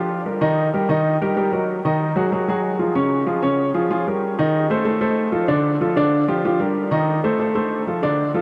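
A woody, vintage-toned upright piano plays alone and up front for the full 8.4 seconds of this short jazz excerpt, its smooth, long-sustaining notes moving through chords such as Ebm, Gbsus2, Cm7 and F. A huge, wet reverb sets the piano in a vast, echoing space, while the straight, four-beat feel keeps the mood sunny and danceable.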